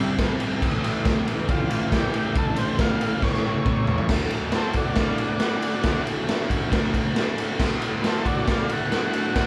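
Raw, rowdy garage rock cut from a longer piece, with a crunchy, double-tracked overdriven electric guitar riff and a buzzy vintage combo organ melody thick with heavy vibrato over a gritty, punchy, up-front drum kit that enters at 0.2 seconds, plays a fill from 3.2 seconds, and continues beneath the organ solo from 4.1 seconds onward, all captured as a band playing live in one large studio room with moderate reverb.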